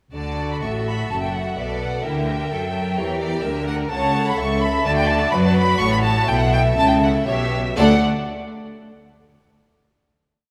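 Bathed in the wet reverb of a scoring stage, this short, spirited classical-period piece for string orchestra sets a rich, up-front first violin section's smooth vibrato melody above clear, intense second violins weaving independent inner lines and a viola section carrying a counter-melody with sustained chords, while a distant cello section walks the bass that a focused double bass section doubles, the ensemble moving with flexible rubato before settling on a final chord at 7.8 seconds.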